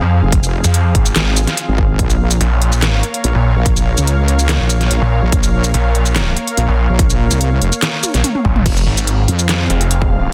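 Chaotic and heavy, this is a short slice of wobble dubstep at 144 BPM in a half-time feel, sitting in F minor with a move to B-flat minor. It stays in the drop throughout. A growling, aggressive distorted saw bass with a moving notch drives the low end up front, while a wobbling, detuned wobble bass with chorus and overdrive enters at 0.2 seconds beside it. A lush, thick unison pad holds sustained chords beneath, its slow attack and long release pumping against the sidechain. From 0.3 seconds a punchy electronic kick and a layered drum kit come in, with a deep, clipped snare, crisp hats, shaker, handclaps, toms and crash, and a drum fill from 8.0 seconds leads back into the drop at 8.7 seconds. The mix is dry, dense and heavily limited in a modern master.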